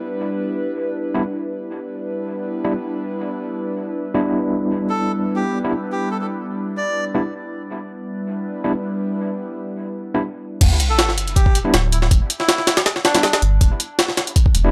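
A nostalgic, frenetic drum and bass and jungle excerpt opens on a warbling, detuned tape-like pad that sustains chords through chorus, phaser and built-in reverb. Overdriven tine electric piano stabs with fast tremolo and dub echo soon join, along with a reedy, breathy, nasal melodica melody that carries its own dub echo. When the pad gives way at 10.6 seconds, the drop arrives with an electronic sub drop impact, a deep, thick saturated sub bass and a compressed, pitched-up jungle sampler-style kit with a thumpy kick and high-tuned snare, all set in a dry hardware recording.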